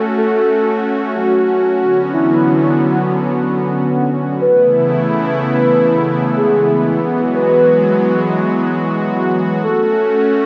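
A soft, round synth lead doubled at the sub octave sings a dreamy, romantic synthwave melody with vibrato, chorus, phaser and digital delay over an up-front, warbling vintage sawtooth pad that holds slow-blooming chorused chords moving from F#m through Bmadd9, Aadd9 and Eadd9, all set in a moderate scoring-stage reverb in this fragment of a longer piece.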